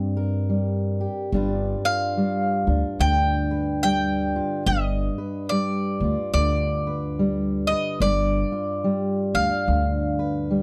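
Acoustic country blues at 72 BPM in 4/4 with a swung eighth-note feel, swaggering and rollicking in this short excerpt cut from a longer piece, moving from a C5 chord to G7. A fingerpicked steel-string acoustic guitar sits up front with a warm tone and audible finger squeak, over a thumpy, dark pizzicato upright bass on gut strings, and at 1.9 seconds a bright, woody mandolin enters up front with the melody, its double strings ringing in a high register. The sound is dry and close, like a 1970s studio recording touched with light reverb.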